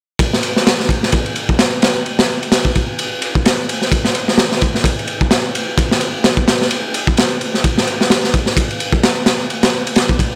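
Swaggering and raw, this short breakbeat excerpt in 4/4 with a swung sixteenth feel is carried by a crunchy acoustic drum kit alone, its punchy kick, high-tuned snare and dark ride cymbal sitting up front in a dry, gritty, saturated studio-room sound with a rolled-off top.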